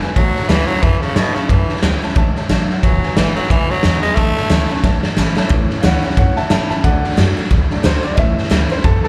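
Heard live through a club PA with light reverb, this rowdy, retro rockabilly swings at 180 BPM in A major, as a raspy, gritty tenor saxophone with slapback echo carries the melody up front until 4.8 seconds over a bright picked acoustic guitar in the background, also with slapback, a woody upright piano, pizzicato upright bass and a raw garage drum kit with a punchy kick, and after a drum fill the piano takes an open-sounding solo from 5.5 seconds.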